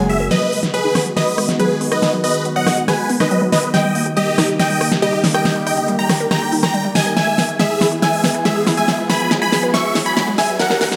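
A straight 4/4 pulse drives this soaring, euphoric uplifting trance build-up from 0.3 s, where a bright, detuned supersaw lead with phaser and digital delay sings up front over a thick, chorused unison pad, a punchy, wave-folded unison pluck arpeggio under a filter sweep, a round, tape-tinged analog pluck second line, a very quiet swell and riser, and a layered big-room drum kit whose crisp hats, rim click and huge snare play a fill, the whole bathed in lush hall reverb over G#m7, D# and E.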